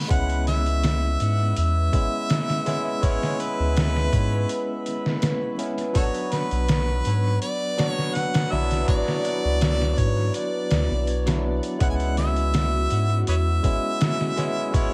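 A straight, hypnotic trip hop groove rides on a compressed, pitched-down sampler-style kit with a thumpy kick, medium-tuned snare and hi-hat in a small room, while a round, deep analog bass with a filter sweep sits up front until 13.6 seconds. A barky tine electric piano with harmonic tremolo, sampler grit and analog delay comps through C#m7 and Bm, and a clear jazz-style harmonica leads with light vibrato, tongue slaps, scooped notes and dub echo. From 1.4 seconds a moody sawtooth pad with chorus and phaser hovers in the background, and the smoky, echo-heavy mix carries vinyl crackle throughout this excerpt from a longer piece.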